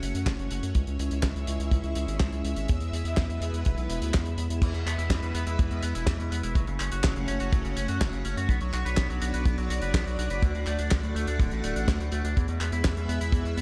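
Italo disco at 124 BPM in a straight 4/4, this short cut from a longer piece carries a bittersweet, melodramatic mood over a minor-leaning progression that moves from F#m through C#m and E, then on to Bmadd9 and D. A lush vintage string machine holds sustained sawtooth chords with a sub octave, a slow attack and an ensemble chorus that gives it a full, shimmering sheen. Up front, a round analog bass mixes square and sine tones with a wave-folded, evolving edge, its fast attack and mellow depth anchoring the low end. A damped 70s kit brings a fat snare, dark cymbals, handclaps, hi-hat and crash, while a tight, dry kick arrives at 0.3 seconds, both dressed in studio reverb with a rolled-off top. At 4.6 seconds a clean, twangy electric guitar joins with picked arpeggios through an envelope filter, spring reverb and digital delay, adding a bright, glinting line. The whole mix sits in light reverb and small room ambience.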